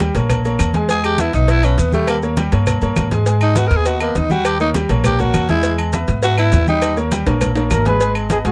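Driving at 202 BPM in a straight 4/4, this fiery, passionate salsa rides on hard-hand, low-tuned congas, a round cowbell, ringing agogo bells and timbales, woody claves and grainy maracas, while a thumpy pizzicato upright bass sits up front and a bright, long-sustaining upright piano comps through the dry, close 1970s-style studio sound, as a raspy, growling tenor saxophone solos from 0.9 to 7.0 seconds before a whispered, intimate flugelhorn with scooped notes takes over at 7.7 seconds.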